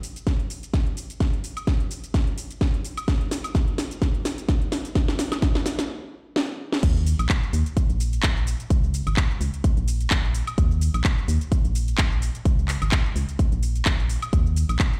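The recording sounds as if it is played through a big sound system in a bare room, with a light stone-room reverb around the parts. This bittersweet, soulful piano house excerpt, cut from a longer piece, rides a swung groove in four. A house drum kit opens the build-up with a cracking snare, metallic hats, handclaps, shaker, woodblock and crash cymbal, and it is joined at 0.3 seconds by a punchy electronic kick. Both drum parts sit up front with a tape-warm, layered tone, as though re-recorded in a small room. A drum fill runs through most of the build-up before a brief stop, with a short fill returning at the stop's tail, and at 6.8 seconds the drop arrives with an organ-like FM bass. The bass is hollow, dark and percussive, with a fast attack that decays, and it carries tube saturation and sidechain pumping through to the end.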